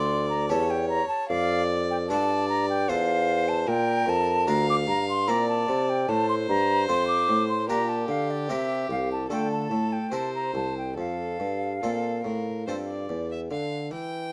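Serene and flowing, this baroque-style sonata movement in 3/4 moves at a rubato 75 BPM from D minor into F major at 3.7 seconds, with a hollow, airy silver flute carrying the up-front tongued melody until it stops at 13.1 seconds, a smooth bowed violin playing a vibrato second line, a bright plucked harpsichord filling in the continuo accompaniment, and a mellow solo bassoon providing the bass, all captured close and detailed in light reverb.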